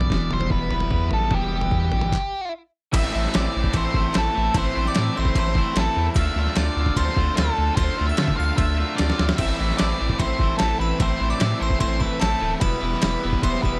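A gritty, pitched-down boom bap drum kit with a thumpy kick, crash and ride cymbals, handclaps and toms drives this cool, restless indie rock excerpt in a straight 4/4, alongside a thick, saturated sub bass, a crunchy overdriven rhythm guitar and a twangy, clean guitar with subtle chorus and slapback echo. Up front, a dark octave-fuzz lead guitar carries the melody with distortion and slapback echo, and after a brief stop ending at 2.9 seconds a delicate, tinkling FM synth bell with chorus and phaser enters softly in the background. A drum fill at 9.0 seconds punctuates the moody minor-key progression, all captured in a dry, close 1970s-style studio sound.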